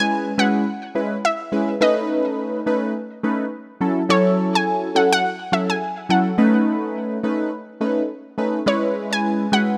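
An analog pluck carries the melody up front, its round, detuned tone given a sub-octave weight and a soft filter snap, with chorus and tape echo trailing each decaying note. Beneath it, warm analog keys supply the accompaniment, a sawtooth sound with a filter sweep, colored by chorus and phaser and also placed close in the mix. This hypnotic, mellow afrobeats fragment moves at 105 BPM in 4/4 with a gentle swing on the sixteenths, and it is cut from a longer piece. Both parts play together from 0.0 to 9.8 seconds over a cycling progression of C#m7, B9 and F#m7 that returns to C#m7 near the end. Light reverb and a digital ambience give the short passage a soft, airy space.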